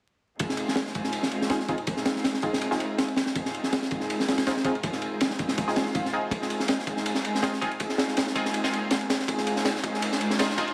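Dark and nostalgic, this drum and bass and jungle excerpt at 162 BPM in F minor sets a muted, veiled symphonic string section holding sustained bowed chords on an Fm7 under a crunchy, saturated breakbeat kit with a punchy kick, high-tuned snare and dark ride cymbal sitting up front, while a nasal, band-passed sawtooth chord stab soaked in chorus and dub echo enters at 1.5 seconds and a very quiet electronic swell and riser arrives at 5.8 seconds to lead into a build-up from 6.3 seconds, all wrapped in light reverb and vinyl crackle.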